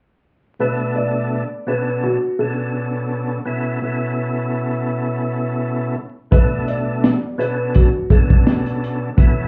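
An 84 BPM groove in 4/4, swung at 55% on the 16ths, gives this short, gritty boom-bap hip-hop fragment in B minor its slouching feel. A percussive tonewheel organ carries the accompaniment from 0.6 s, thick and lightly overdriven, spun through a fast rotary speaker with third-harmonic percussion and a cassette-tape tint, sitting up front across the Bm7 to Aadd9/B to Bm7 changes. Over it, a mellow upright piano picks out a melody between F#4 and D5, its worn, woody tone slightly detuned, with audible action noise and a touch of delay lending it an intimate, shadowy character. At 6.3 s a crunchy breakbeat kit drops in, saturated and rolled-off on top, with a punchy kick, a high-tuned snare and hi-hat heard close in a small room. The whole mix sounds muffled as if through a wall, wrapped in club reverb and vinyl crackle for a dusky, smoky atmosphere.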